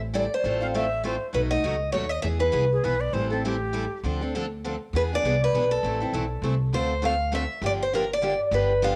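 Bittersweet and fiery, this fragment of acoustic string swing in A minor races along at 201 BPM in 3/4. A woody, thumpy pizzicato upright bass on gut strings sits up front, while a boxy parlour steel-string guitar picks the chords. A second picked steel-string guitar, with fresh strings and audible finger squeak, carries the melody but pauses from 2.7 to 5.0 seconds. A breathy jazz flute with vibrato adds an expressive second line until 4.0 seconds. The guitars and flute carry a cassette-tape color, and the home recording sits in light studio reverb.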